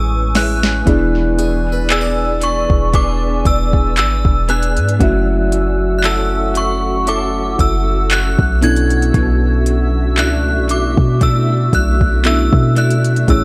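Longing and sensual, this slow contemporary R&B excerpt at 58 BPM drifts over Amaj7, E7, F#m7 and Bm11, with a chiming, inharmonic synth melody and muted, felt-like synth keys both coated in chorus and tape echo, a clean direct-recorded electric guitar picking arpeggios, a blurred granular cloud pad breathing with sidechain pumping, a deep, boomy 808-style bass up front, an overdriven electronic drum kit of soft kick, sharp snare, crisp hats and handclaps entering at 0.3 seconds on a fill, and a brilliant harpsichord glinting in the background from 1.4 to 3.8 seconds, all in a dry, echo-heavy mix.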